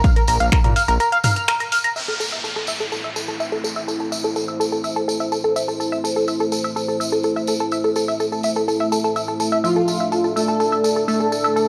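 A straight pulse opens this hypnotic, cinematic melodic techno excerpt, with a punchy, tape-warm electronic kick, a layered techno kit of crash, finger snaps, filtered hi-hats and toms, and a fat, detuned sawtooth bass pumping under sidechain, all heard only briefly before a break and a band accent. A tight, wave-folded sequenced arpeggio runs throughout, treated with chorus, phaser, analog delay and pumping, while a distant, jingly tambourine rings in the background from start to finish. At 2.0 seconds a downlifter falls away as a filter sweep begins on the arpeggio, and at 2.7 seconds a deep, moody pad with a sub octave and slow attack arrives carrying 12-bit sampler grit. From 9.6 seconds a smooth, airy supersaw takes the melody, joined by a crystalline wavetable pluck playing a second line beneath it as the harmony moves from A minor to D minor add nine. The mix has a dry, gritty hardware character with light reverb and a cassette-tape patina.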